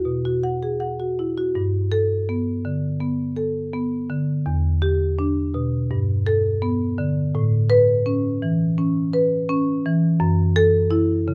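Warm and flowing, this brief excerpt from a contemporary classical piece for solo marimba unfolds with a free, rubato feel, its medium mallets drawing a woody, up-front tone from the rosewood bars across a range from low E2 to F#5, moving through open add9 and minor seventh harmonies from Eadd9 to Gadd9 at 1.6 seconds and closing on F#m7 at 10.2 seconds, all captured by close, detailed microphones in light reverb.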